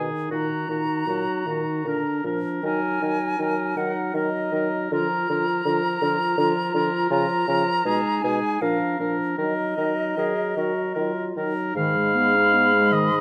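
A silver concert flute carries the melody, its pure, metallic tone touched with vibrato and a soft attack as it sings between Eb5 and Cb6. This is a slow, solemn romantic movement for wind quintet in Eb minor and 3/4, moving at 74-83 BPM with a flexible rubato feel and a melancholic cast. Just beneath it, an up-front oboe with a warm, distant color threads a second line, while a clear, present clarinet and a dark French horn with light vibrato fill out the accompaniment. The bassoon holds the bass between Ab2 and Eb3, roomy and lightly vibrant. The harmony circles Eb minor and Bb, passing through Bb minor and Ab minor colors before a new section opens on Ab minor at 11.8 s. A moderate recital hall reverb surrounds the ensemble in this excerpt, cut from a longer piece.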